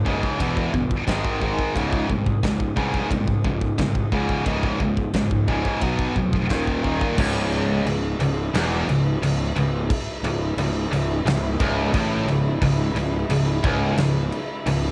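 A punchy, up-front rock drum kit with a fat snare and bright cymbals drives this dark, heavy metal excerpt in C# minor at 88 BPM, with two distorted guitars (one tight, one high-gain) picking riffs behind it and a growly fuzz fingered bass underneath, until at 7.2 s the feel drops to half time as a veiled, muted chamber string section adds sustained chords and a very quiet double-tracked overdriven guitar joins with its own riff, the whole piece sounding like a dry home cassette recording.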